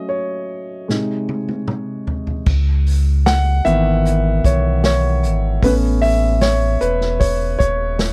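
A dry recording opens this cut from a longer pop ballad in C# minor, moving at a slow 76 BPM in a straight 4/4 with an emotional, heartbroken mood. A dark baby grand piano leads throughout with a mellow, smooth, vintage tone and long sustain, first alone and then as a featured solo voice over F#m and G# chords. An acoustic drum kit played with bundle sticks comes in at 0.9 seconds with a fill, its roomy studio sound carrying dark cymbals, a medium-tuned snare, a tight kick, hi-hat, crash and toms. At 2.5 seconds a deep, full sub bass with an added octave arrives, its sine and triangle tone pairing a fast attack with a sustained body as the harmony settles onto C#m7 and then Aadd9. The piano and bass sit up front, giving the passage an intimate, aching weight.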